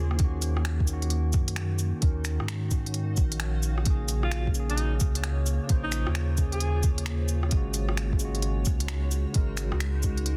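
Gritty, delayed tine electric piano, a blurred granular cloud pad and a round sine sub bass pump against the sidechain from the opening of this nocturnal, ghostly future garage excerpt at 131 BPM in Bb minor, as a gentle, tape-warmed electronic kick and a swung organic electronic kit of crisp hats, cabasa, finger snaps and rim clicks, its snare softly clipped, move through Ebm7, Bbm7 and Ab7sus4, while a distant, vibrato-laden alto saxophone drifts through dub echo from 4.2 to 6.8 seconds over a dense, heavily limited master.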